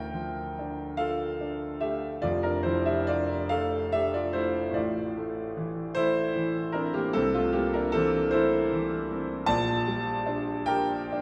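Melancholic and yearning, this short passage from a longer romantic nocturne unfolds in D minor for solo concert grand piano. The tempo drifts slowly in a rubato 6/8, hovering around 43-52 beats per minute counted in dotted quarters, so each phrase seems to breathe at its own pace. The piano sounds clear, open and up front, with a deep bass reaching down to F1 and a range extending up to A5, its notes holding on with long sustain. The harmony moves from D minor through Dm/F to A minor by 4.8 seconds, then to Am/C and finally Gm/Bb at 9.5 seconds, where the 11.2-second passage breaks off. A wet church reverb with a 2.5-second decay surrounds the instrument, giving it the spacious resonance of a church or concert hall.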